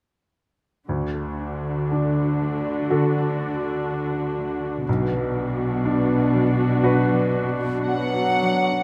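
Bittersweet and sorrowful, this cinematic film-score excerpt for orchestra unfolds in a free, rubato 4/4. From 0.9 s, a bright, up-front baby grand piano with long sustain carries the accompaniment beside a veiled, con sordino viola section. In the background, a mellow, thumb-plucked concert harp rings out arpeggios, while a dark cello section holds the bass with vibrato. The harmony moves from D to B minor at 4.9 s, and at 7.9 s a muted violin section takes up the melody on F#5, joined by an airy small flute group as a second line and a French horn section adding warm, soft-attack sustained chords. Moderate recital hall reverb surrounds the close, detailed sound.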